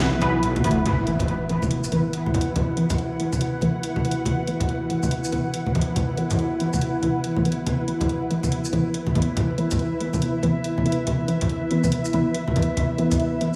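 A half-time groove at 141 BPM in 4/4 swings its sixteenths, giving this dark, heavy deep dubstep excerpt a loping, unhurried pull, tuned slightly sharp to A4 = 441 Hz. A garage drum kit of hi-hat, shaker and cracking, overdriven snare runs throughout, while bright, low-tuned congas sit up front, compressed and saturated, with dub echo trailing behind them. A chorused, sawtooth-and-sine wobble bass opens the piece with a heavy, detuned wobble before stopping at 0.8 s, and a punchy layered electronic kick appears only briefly in the background near the start. Over this, a granular cloud pad holds blurred, full-bodied chords with a slow attack and long release, and muted, deep dub chord stabs with a filter sweep, short decay, ensemble chorus and dub echo keep evolving beneath it. An electronic impact hits at 0.9 s and rings until 2.6 s, and the whole mix feels dreamy and soaked in a lush hall reverb, dusted with vinyl crackle.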